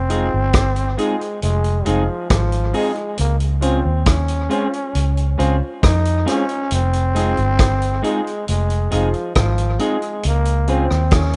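A raspy, growling trombone carries the melody with vibrato and scooped notes, its gritty lines trailing off into dub echo over a serious, meditative roots reggae groove that moves between Fm7 and Dbmaj7. Underneath, a dark, round, foam-muted fingered bass sits up front beside a vintage acoustic kit with a punchy kick, hi-hat and rim clicks. A clean, picked electric guitar, also soaked in dub echo, and warm piano stabs set in the background fill out this rough home-demo mix with light reverb and a rolled-off top.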